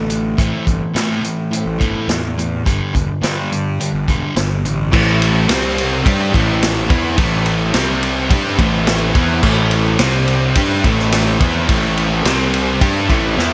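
A gritty, brooding classic rock excerpt in A minor at 107 BPM, heard in a small room, opens with a sludgy distorted guitar riff, growly fuzz bass and an up-front vintage drum kit with dark cymbals, with a shimmering twelve-string acoustic guitar in the background until 4.9 seconds, when two more overdriven guitar riffs, one double-tracked and biting, enter alongside a very quiet tonewheel organ through a slow rotary speaker as the chords pull between Am and C5, closing on a drum fill at 13.4 seconds.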